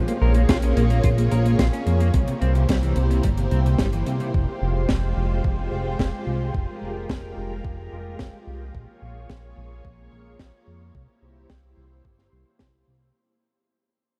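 A light studio reverb frames this driving, cinematic synthwave excerpt in F harmonic minor at 109 BPM, which fades out across its 13 seconds while a filter sweep runs over the glossy, dark, pulse-width-modulated synth bass sitting up front. A lush, mellow string machine holds slow-attack chords with ensemble chorus and sidechain pumping through Bbm7, C7 and Fmadd9. A dark, slightly broken-up fingered electric guitar plays a riff with analog chorus and tape echo from 0.1 to 4.3 s, over a dry reggae kit with a high-tuned snare and hi-hat, joined at 0.5 s by a thumpy, tape-toned electronic kick.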